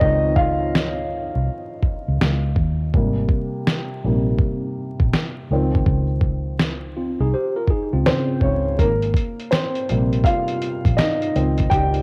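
This lo-fi hip hop excerpt drifts at 82 BPM in 4/4 with a swung sixteenth-note feel, carrying a nostalgic, dreamy mood over a gentle cycle of Dbmaj9 and Abmaj9 chords. A dark upright piano sits up front throughout, mellow and woody with short sustain and audible action noise, its tone softened by cassette tape and a low-pass filter. Beneath it, a vintage muted fingered electric bass gives a round, foam-muted low end, while a gritty, compressed sampler-style drum kit, re-recorded in a small room, thumps along with a fat snare, hi-hat and a thumpy kick. From 7.0 to 8.8 seconds a worn, slightly out-of-tune tine electric piano slips in briefly, lightly overdriven and colored by tape echo, as if heard through built-in speakers. Light reverb, a cassette home-recording character and a bed of vinyl crackle wrap the whole fragment in a hazy, intimate glow.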